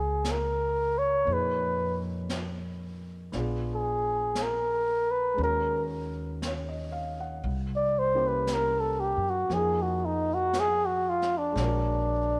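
A mellow flugelhorn opens this smoky, wistful jazz ballad in Eb minor, with grand piano and pizzicato upright bass sounding from the start and a brushed drum kit joining at 0.2 seconds. The flugelhorn carries the melody as an up-front solo from 0.0 to 12.4 seconds, shaping its lines with light vibrato and scooped notes in a jazz style. Beneath it, the piano's intimate, natural accompaniment comes with audible action noise, while the bass offers a woody foundation. The drums sit distant and roomy, with brushes on a medium-tuned snare and hi-hat. The slow 58 BPM swing in 4/4 drifts through lush harmony, from Gbadd9 through Bb7b9 and Ebm7 to a closing Bb7alt. A light reverb softens the whole passage, which is cut from a longer piece.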